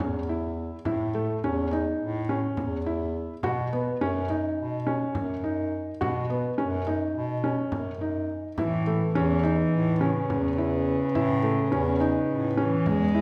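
Straight eighths pulse in 9/8 at 210 BPM, giving this contemporary chamber piece a restless yet hopeful lilt as it moves from A to Badd9 and then to Aadd9. A felt-muted upright piano carries the arpeggios throughout, its soft, mellow tone sitting intimately up front with audible action noise and short sustain, while a bright, close-miked bass clarinet holds the bass line in a classical manner. A small frame drum taps along in the background, crisp and dry. At 8.6 s a single bowed cello enters up front, played sul tasto with a warm, floating purity, and a dark woodwind section adds tight, lightly vibrato chords from a distance. The whole passage rings in a wet recital hall reverb, and the fragment breaks off at 13.2 s as though cut from a longer work.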